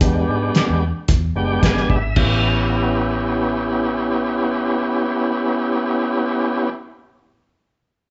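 A muffled, dark live-room sound with a moderate large-studio reverb frames this short, laid-back soul blues excerpt in A mixolydian, moving at 111 BPM in a straight 4/4 feel. Up front, a thick, lightly overdriven tonewheel organ through a slow rotary speaker carries the accompaniment and plays a fill from 1.1 to 2.2 seconds, while a round, foam-muted vintage electric bass holds the low end throughout. A cloth-damped, thuddy drum kit with a fat snare, tight kick, dark cymbals and gritty saturation plays only until 2.3 seconds, just as the harmony shifts from E7#9 to A9.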